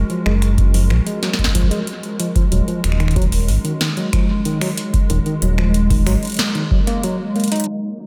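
Wistful and intricate, this short IDM excerpt moves at 93 BPM in a straight 4/4, drifting from Gbmaj9 to Ebm7 at 2.5 seconds. A hollow, flute-like pad holds soft, warbling chords under an ensemble chorus, while a round analog bass with a dark, evolving tone sits up front in the low register until 6.2 seconds. A clean tine electric piano spins arpeggios through an analog delay, with a filter sweep running across its part. The booming analog drum machine brings finger snaps, a crisp snare and metallic hi-hats, joined by a deep electronic kick, both re-recorded in a large room, and a brief drum fill arrives at 7.4 seconds. The dreamy mix is soaked in church-like reverb and softened by a low-pass filter.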